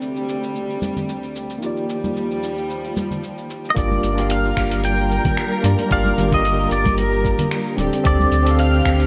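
Bright, lightly reverberant 1980s-style digital production frames this relaxed sunset chillout piece in G minor, cut from a longer track and moving at 112 BPM in 4/4 with a gentle 16th-note swing. A clean tine electric piano with digital delay and a lush, woody string section with vibrato carry the harmony from the start, moving from D7sus4 to Ebmaj9. Beneath them, a gritty, overdriven sampler-style kit of cabasa, finger snaps and hi-hat, re-recorded in a small room, sits low, and soft-handed congas ring in the background from 0.8 seconds. At 3.7 seconds a twangy pedal steel guitar takes the melody, played with fingerpicks and slide, its volume swells colored by analog chorus and digital delay. The chords settle on Gm7 as a round sine sub bass and a thumpy, overdriven electronic kick arrive at 3.8 seconds, the bass sitting loudest in the mix and giving the groove a warm, unhurried weight before the progression returns to D7sus4.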